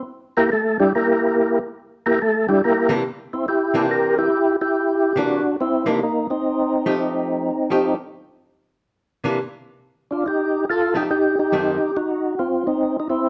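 A percussive tonewheel organ carries the melody up front, its fat, lightly overdriven tone shaped by key click, chorus vibrato and a slow rotary speaker, playing alone for the first 3.0 seconds of this soulful, bluesy jazz excerpt swung at 142 BPM. A dark, clean archtop guitar, hollow-bodied, picked and compressed, joins as accompaniment at 2.9 seconds and drops out at 11.8 seconds, over changes moving between C9 and F9 before closing on F#dim7. Moderate studio reverb gives the whole a warm, dark production.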